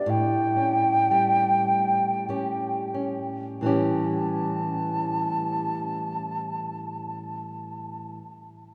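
The rhythm moves freely in a rubato 3/4, drifting between 43 and 61 BPM and slowing down over the opening 3.6 seconds of this short excerpt cut from a longer Celtic slow air. Set in A mixolydian, the piece carries a nostalgic, pastoral mood, with an A7 chord sounding near the start. A mellow wooden flute sings the melody up front between D5 and A5, its airy tone shaped by expressive vibrato, a crisp attack and rolled-off highs. Beneath it, a fingerpicked flamenco guitar plays the accompaniment, also up front, with an acoustic, warm character ranging from A2 to G4. Both parts sound together for about eight seconds as the passage moves from its opening phrase into a second section at 3.6 seconds. The whole performance sits in a church or concert hall, bathed in a wet cathedral reverb with a long 7.0-second decay.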